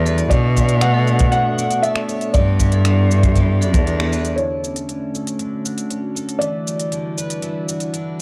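A straight 4/4 pulse at 118 BPM drives this playful, pastoral folktronica excerpt in D major, with a punchy, gritty kick and an organic electronic kit of cabasa, finger snaps and crisp hats, the kick stopping at 3.8 seconds. A bowed, up-front cello carries the bass until 4.3 seconds and a ringing, hard-mallet vibraphone adds a second line until 4.4 seconds, while an octave-doubled twelve-string guitar picks shimmering arpeggios roughened by sampler grit and tape echo under a warbling, nostalgic pad of sustained chords. A felt-muted upright piano sings a mellow, intimate melody over Bm9, G6, Dmaj7 and Em9, with a band accent at 4.0 seconds and a filter sweep on the guitar through the second half.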